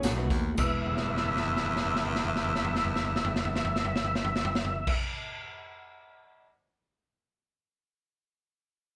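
Joyful and uplifting, this brief excerpt of uptempo 1960s-style soul at 108 BPM in E major sets a raspy, punchy baritone saxophone riff and a boomy, gritty garage drum kit, which plays a fill from 0.9 seconds, over woody pizzicato upright bass, a dark, boxy upright piano, jingly tambourine and very quiet ringing congas, while a twangy clean electric guitar riff gives way at 0.6 seconds to a lightly overdriven tonewheel organ melody with key click, chorus vibrato and a slow rotary speaker, in a moderate small-room reverb.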